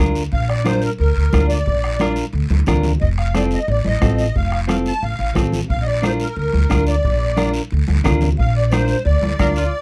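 A straight, festive cumbia groove in 4/4 rides on a soft-beater bombo, ringing hard-hand congas and a raspy guiro, with a woody pizzicato upright bass and a twangy, picked clean electric guitar sitting up front over a sunny Bb to F7 and back to Bb progression. A reedy, shimmering musette accordion carries the melody from 0.3 seconds, its dark, smooth tone close and present in the dry, intimate 1970s-style studio sound. A clear, punchy trumpet with light vibrato slips in only at 9.4 seconds, just as this fragment of a longer piece cuts off.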